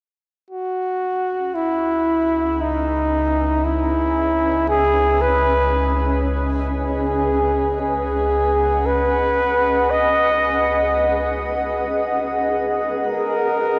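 Melancholic and serene, this ambient fragment in a slow triple metre opens at 0.5 seconds with a mellow, close-miked flugelhorn carrying the melody up front, its soft attack and light vibrato trailing shimmer reverb and delay. A cloudy, wave-folded granular pad fades in from 1.4 seconds with blurred, evolving sustained chords, and at 2.2 seconds a dark, ominous, rumbling drone settles underneath, treated with a phaser. The harmony rests on C#7sus2 before moving to F#69, all within a huge, wet reverberant space with a soft, rolled-off top end.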